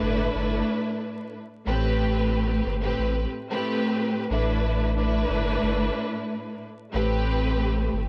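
Vinyl crackle, light reverb and a small-room ambience frame this short, reflective and dark hip hop cut, its highs gently dulled. A lush, bowed string section sits up front with expressive vibrato and a smooth, filtered top, moving between G69 and Am7 chords over a swung 16th-note feel. Underneath, a thick, saturated sub bass with a fast attack holds mellow, sustained low notes.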